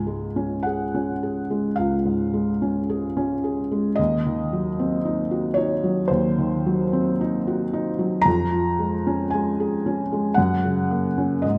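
Rubato 4/4 at 51-58 BPM sets the unhurried pace of this serene, nostalgic romantic classical nocturne excerpt in Db major, played by a solo felt-muted upright piano whose soft, mellow, intimate tone and audible action noise sit up front in a wet recital hall reverb as the harmony moves from Db through Cdim/Eb and Db/F to Gb.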